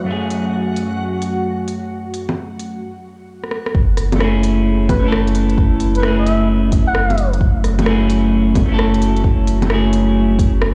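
Future garage at 131 BPM with a 16th-note swing in F# minor sets a rainy, nocturnal mood: a clean, picked electric guitar with tape echo and a nostalgic, warbling lo-fi pad pump against the sidechain while a bright, reversed granular texture swells briefly at the start, smooth hi-hat, bongos and rim clicks with gritty 12-bit sampler character drive the groove, a deep electronic kick and a round, warm sine sub bass arrive at 3.7 seconds, and a veiled bucket-muted trumpet plays a jazz-style solo with vibrato, scooped notes and analog delay from 4.9 to 7.3 seconds, all set in a large, reverberant studio space that sounds like a big sound system playing in a bare room.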